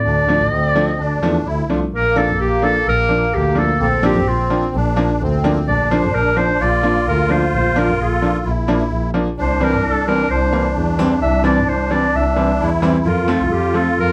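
A clear, up-front clarinet carries the bittersweet, festive klezmer melody with a slapback echo, over a shimmering musette accordion second line, a smooth bowed double bass and a bright, woody, slightly detuned upright piano with audible action noise, in straight 4/4 at 129 BPM that speeds up across this 14.1-second cut moving from Dm through Bb and C to F, all captured with close, detailed microphones and light reverb.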